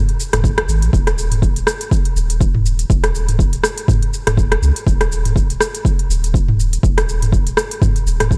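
A punchy, layered electronic kick drum sits up front in this short afro house excerpt, entering at 0.4 seconds and driving a steady 122 BPM in 4/4. Around it, a crisp, produced afro-pop drum kit of hi-hat, rim click, shaker and toms starts almost immediately at 0.1 seconds, its 16th notes carrying a 57% swing that gives the groove an earthy, hypnotic sway. Underneath, a deep, round sine sub bass arrives at 0.3 seconds, its fast attack and sustained, mellow tone moving between Eb1 and Db2 while sidechain pumping makes it breathe with the beat. A light reverb lends the mix a touch of space, and the whole passage, tuned to A4 = 439 Hz, stays in a single section from start to finish.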